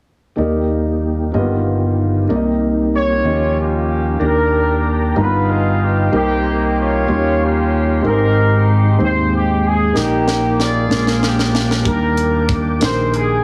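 Set in a slow 6/8 with a straight feel, this jubilant, uplifting gospel passage, cut from a longer piece, opens on a clear concert grand piano with deep bass and long sustain. Beside it sit a soft, flute-like tonewheel organ with key click, chorus vibrato and a slow rotary speaker tucked into the background, a bright, direct fingered electric bass up front, and a very quiet, dark French horn section holding smooth classical chords until 4.2 seconds. At 3.0 seconds a warm, pop-style horn section takes the melody, sounding roomy and distant yet up front, with a light vibrato. The chords move through lush sevenths, altered dominants and thirteenths before climbing to a major seventh on the fourth degree, then settle back home through a dominant. A polished, airy fusion drum kit arrives around 10.0 seconds with a fill, a punchy kick and a high-tuned snare. Light reverb surrounds a heavily compressed, radio-like sound.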